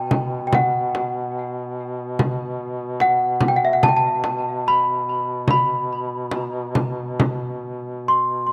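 The recording sits in a moderate echo chamber with a reverb tail of about 1.9 seconds, and it is a short cut from a longer piece. It is a solemn, longing Caucasian folk lament in 4/4 at 72 BPM, played with a free, rubato feel. A worn celesta carries the melody up front between E5 and C6, its bell-like, delicate, sweet tone struck with medium felt hammers, slightly out of tune and trailed by tape echo. Beneath it, a warm duduk holds a low drone on B2 with vibrato and scooped notes, sounding vintage and folk in style. A small, bright acoustic frame drum sits close and dry near the front, entering at 0.1 seconds and falling away at 7.4 seconds, while the celesta and duduk carry on to the close at 8.5 seconds.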